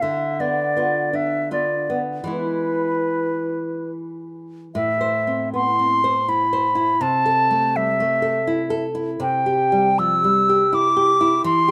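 In a rubato three-beat lilt, this tender, serene romantic duo opens a short excerpt from a longer piece, with the concert flute carrying the melody in a pure, straight, tongued tone set up front. A warm nylon-string guitar accompanies throughout on fingerpicked classical chords, with an audible finger squeak, moving from a diminished chord to E before a new passage begins at 4.7 seconds, settling on A minor and then C. The small room ambience and rough home demo mix give the pair an intimate, unpolished closeness.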